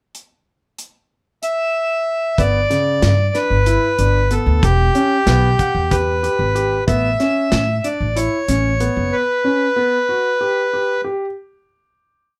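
In a straight 7/8 at 187 BPM, this driving, intricate progressive instrumental in G lydian opens with a punchy acoustic drum kit groove of hi-hat, kick and snare; a reedy, dry accordion enters up front at 1.4 seconds with call-phrase motifs, and at 2.4 seconds a woody pizzicato upright bass joins with a syncopated riff alongside an intimate concert grand piano ostinato with audible action noise and long sustain, all moving through G, Em, Aadd9 and Gmaj7 under light reverb and close, detailed microphones.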